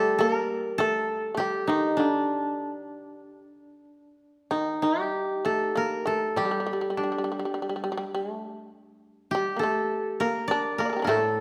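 Austere and calm, this brief excerpt of Japanese traditional chamber music moves in a slow, rubato 2/4 at around 47-52 BPM, tuned slightly low to A4 = 438 Hz. A mellow, woody koto carries the melody up front, played with fingerpicks, while a buzzing, percussive plectrum-plucked shamisen adds a powerful second line and a second koto supplies a warm, dry accompaniment lower down. All three play throughout the 11.4 seconds, heard in a moderate recital hall reverb, with a shift to a new section at 4.5 seconds.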